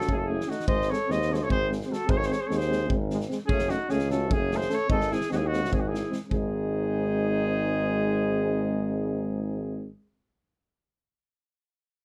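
Balkan brass band folk in 7/8 at 298 BPM in eighths, restless and bittersweet in G# phrygian dominant, with a mellow, roomy trumpet carrying the melody up front over a soft-attacked alto saxophone second line with light vibrato, a clear, distant-sounding tuba on bass, a euphonium with vibrato set in the background and a trombone with a smooth top, all in light reverb, while a loose acoustic drum kit with punchy kick and fat snare plays up front until it drops out at 6.5 s.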